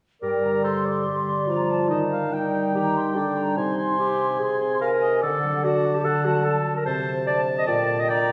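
The mellow clarinet sits up front in this stormy, urgent classical excerpt, its roomy, distant solo voice carrying a second line through the whole passage from 0.2 to 8.3 seconds. Around it, a large flute ensemble adds a pure, hollow layer high above, with vibrato and a crisp attack that still sounds far off. An oboe with light vibrato contributes its own warm solo line, while a dark bassoon with a soft attack supplies the low accompaniment. A thumb-plucked concert harp rings out in arpeggios alongside the winds. The rubato feel lets the harmony move from a minor opening through shifting chords to a tense dominant before settling back on the tonic, all bathed in the wet reverb of a recital hall.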